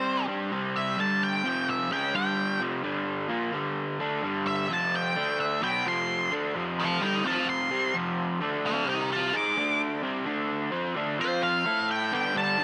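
A dark, fuzzed-out lead electric guitar takes a solo from 0.0 to 12.1 seconds, its picked, distorted line colored by wah and slapback echo as it ranges between A4 and D6. Beneath it, a crunchy, overdriven, double-tracked rhythm guitar plays a picked riff, and both guitars sit up front. This driving, confident rock excerpt moves at 129 BPM in a straight 4/4 in G mixolydian, wrapped in a moderate plate reverb with a 2.6-second tail.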